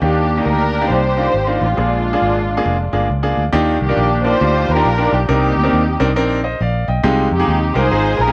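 A veiled, con sordino string section carries the melody with light vibrato and a soft bowed attack, touched by slapback echo, while a clear grand piano and a round, foam-muted fingered electric bass play alongside from the first moment of this short excerpt. The uptempo gospel groove swings in 4/4 with a soulful, hopeful feel, moving through rich major-seventh and ninth harmonies before settling on a minor ninth chord at 7.0 seconds. All three parts sit up front in a small room with light reverb.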